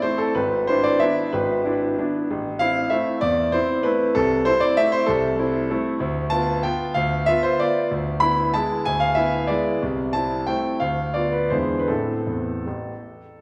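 A bright concert grand piano carries this short classical waltz on its own, sitting up front with a brilliant, open tone, deep bass and long sustain across a range from G#1 to B5. In 3/4 and A minor, the playing is rubato, with the tempo drifting between 154 and 204 BPM, giving the music a nostalgic, elegant sway. The harmony circles the home key through dominant and diminished colours, moving from an opening E7/G# to A minor, then through Bdim/D and E7 before settling on A minor at 11.9 seconds. A wet scoring-stage reverb with a two-second decay surrounds the instrument with a spacious ambience. Cut from a longer piece, the passage runs about 13.4 seconds.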